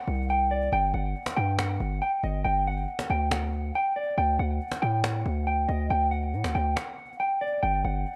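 Hip hop and trap at 139 BPM in a half-time 4/4 feel, this brooding, menacing passage is cut from a longer piece, moving through C5, G5 and D chords with a break at 6.8 seconds. A mellow, dark electric guitar carries the fingered melody up front, clean and compressed with subtle chorus and a low-pass filter, over a heavy, aggressive distorted 808-style bass whose sine tone has a noise layer, a fast attack and a decaying body. A snappy acoustic cajon with snares sits quieter in a live room, while moderate lush hall reverb and bright 1980s-style digital production shape the overall sound.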